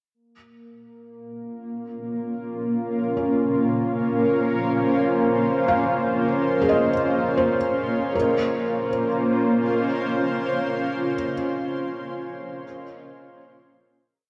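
This ambient piece in free time feels serene and reflective, set in a dark, lush hall reverb that lets every sound linger. A nasal, sawtooth-and-pulse analog drone with chorus and shifting pulse width sits in the background from 1.3 seconds, its slow attack and long release keeping it hazy. Just after, an up-front granular cloud pad spreads blurred, slowly changing chords in unison, carried by its own reverb and shaped by a filter sweep across the opening section. From 3.2 seconds, a felt-muted upright piano fades in with soft, intimate arpeggios, its thick felt and audible action noise giving a close, mellow touch, while three slow loops of unequal length drift against each other through a diffuse delay. At 8.1 seconds the harmony settles onto a final minor chord, and the piano is the last part to sound.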